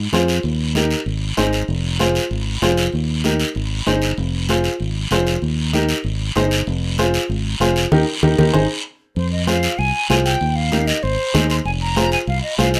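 Cumbia with a danceable, passionate drive, this rough home-demo cut sets a punchy, up-front fingered electric bass and a clear, woody, slightly detuned upright piano over raspy, saturated guiro and bright, hard-handed congas tucked in the background, cycling Eb, Ab and Fm chords through a wet studio ambience until a band accent at 7.9 seconds and a drum fill from 8.4 seconds lead into an airy silver concert flute melody with vibrato from 9.2 seconds.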